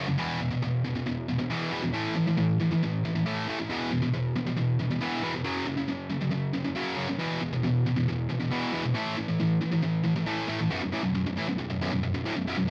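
Metal at 137 BPM in a relentless, heavy mood, with a bright, double-tracked high-gain distorted guitar playing alone and up front from 0.0 to 12.7 seconds, picking power chords on E, A and F# before moving to B at 10.7 seconds, in a dry, rough home demo mix cut from a longer piece.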